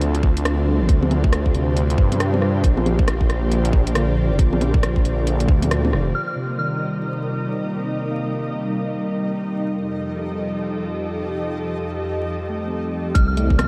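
Rainy and nocturnal, this swung 137 BPM future garage excerpt in C dorian drifts through a huge, reverb-soaked haze with vinyl crackle, as a worn, slightly out-of-tune tine electric piano sits in the background beneath an ethereal, warbling pad with ensemble chorus, while a menacing, saturated detuned saw bass and a tight, up-front electronic kick with a gritty garage kit of bongos, hi-hat and rim click pump through the opening before falling away by 6.1 seconds, when a pure FM bell with chorus, phaser and analog delay appears, followed at 7.9 seconds by a reversed, granular swelling texture, and the bass and drums return at 13.2 seconds.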